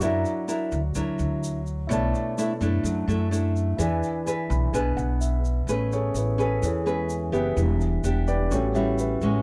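A full-bodied, fingerpicked nylon-string guitar sits up front in this sophisticated, romantic bossa nova in A major at 127 BPM, joined by a woody, growly pizzicato upright bass and a grainy, bright tube shaker. An intimate grand piano with long sustain and audible action noise plays a fill from 4.3 seconds, then takes a solo from 5.7 to 9.4 seconds over rich extended chords. The dry, close 1970s-style studio sound gives this short excerpt an intimate, up-close feel.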